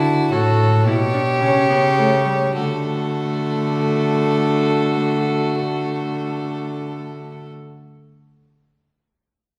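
Classical baroque-style fugue for string quartet, a joyful, elegant fragment of a longer piece in which a nasal, airy-bowed period violin carries the melody over a second violin with light vibrato, a reedy gut-string viola accompaniment and a rich, up-front cello bass, the tempo slowing through the opening 2.6 seconds as an A7 chord resolves to D, the quartet bathed in a wet recital-hall reverb and heard from further back in the room.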